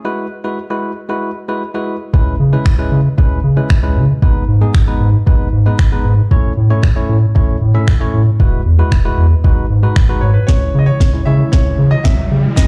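Dry, this driving, confident dance-pop excerpt at 115 BPM in C# minor opens on a barky, bell-like tine electric piano pumping to the sidechain, joined at 2.1 seconds by a round, deep analog bass and an up-front smooth R&B kit of soft kick, sharp snare, finger snaps and shaker. A clear concert grand piano melody with delay enters at 10.2 seconds, just before a build-up from 10.5 seconds brings a drum fill, a glassy, ethereal FM pad with ensemble chorus, and a background riser.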